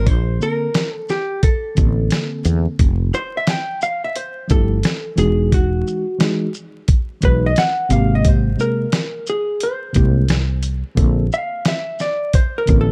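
A dark, clean hollow-body jazz guitar takes a picked solo from the very start over a growly, round fretless bass, setting a cool, relaxed jazz-hop groove with a lazy swing. A dusty sampler-style kit arrives at 0.1 seconds with a thumpy kick, fat snare, hi-hat and shaker, all gritty and compressed up front, and a worn, slightly out-of-tune tine electric piano adds mellow chords from 0.4 seconds. The production is dark and warm with vinyl crackle and digital ambience, and the clip ends at 12.9 seconds as part of a longer piece.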